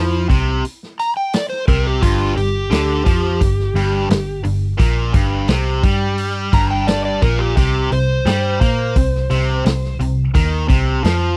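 Swaggering and gritty, this blues rock and southern rock excerpt struts along at 86 BPM in a straight 4/4, cut from a longer piece. An overdriven slide guitar carries the melody with a dark, fingered tone sitting up front, and it drops out at 10.0 seconds while the rest of the band carries on. Beneath it, a bright, double-tracked electric guitar pounds out a picked riff in the low register, with the chords moving from a chordless opening to G5 at 2.0 seconds and on to C5. A vintage electric bass, foam-muted, amped and round, anchors the bottom end with a dark thump. The acoustic drum kit enters at 0.3 seconds with hi-hat, a punchy kick and a medium-tuned snare, its small-room sound mid-forward with a rolled-off top. The whole trio is captured dry and close, in the manner of a 1970s studio recording.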